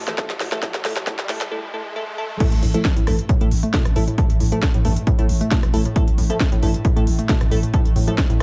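Tape-warm drums re-recorded in a small room and a digital ambience frame this intense, relentless peak-time techno, cut from a longer piece at 135 BPM, where an electronic riser, a drum fill and a break build toward a drop at 2.4 seconds while crisp, 12-bit-gritty wavetable chord stabs sweep through their filter, a very quiet eerie metallic drone hangs beneath, and a warbly, dusty, lo-fi pluck riff with chorus and tape echo sits in the background, until a growling, buzzy, overdriven 808-style bass arrives at the drop, joining a punchy, up-front electronic kick and a kit of cracking snare, smooth hats, rim click and crash, with the bass, pluck, stabs, hats and cymbals pumping to the sidechain.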